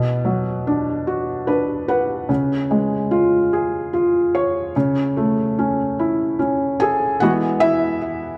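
A dark, warm production places this short cut from a longer pop piece in a wet concert hall reverb with a 2.0-second decay. A lone felt-muted upright piano sits up front, its thin felt giving a soft, mellow, intimate tone with short sustain, audible action noise and tape echo. The music moves in a swaying 6/8 at 49 BPM, counted in dotted quarters with a straight feel, in A major, and the mood is heartfelt. The piano adds a fill from 1.1 seconds over Bm, and the harmony then moves to C# at 2.3 seconds and A/C# at 4.7 seconds. At 7.2 seconds a new passage begins on E, and the piano carries it alone until the cut ends.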